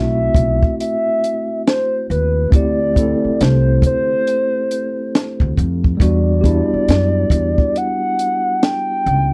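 A hollow, clarinet-like synth lead with chorus and vibrato carries the melody over a mellow tine electric piano and a woody pizzicato upright bass from the start, joined at 0.3 seconds by a compact cocktail drum kit with a high-tuned snare, punchy kick and rolled-off top, in this smooth, late-night neo-soul R&B excerpt of swung sixteenths moving through Am69, D7sus4 and Em9 in a dry, close 1970s-style studio sound.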